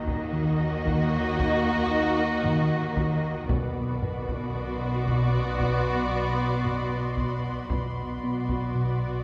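A wet concert-hall space surrounds this ominous, tense excerpt of a suspense film score at 57 BPM, where veiled, con sordino violin sections carry a melody, a second line and a lush high texture over muted violas, cellos and double basses, a smooth sawtooth synth bass riff, a faint metallic inharmonic drone and heavy, saturated taiko drums entering at 0.1 seconds, as the harmony shifts from Ebm to Bm at 3.5 seconds.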